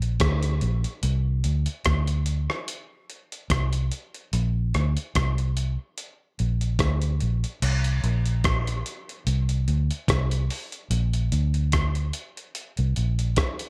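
Deep and meditative, this dub reggae fragment cut from a longer piece moves at an unhurried 73 BPM in 4/4 with a light swing on the sixteenths. A vintage muted fingered electric bass sits up front, dark, round and punchy with its foam-muted, amped tone, staying low between Bb1 and D2. Beside it, a dusty soul sampler-style drum kit brings a gritty, compressed sound with a thumpy kick, hi-hat, rim click and crash cymbal, carrying the roomy character of a large space, while the overall mix keeps reverb to a minimum as the music passes from its opening section into a second one at 7.6 seconds.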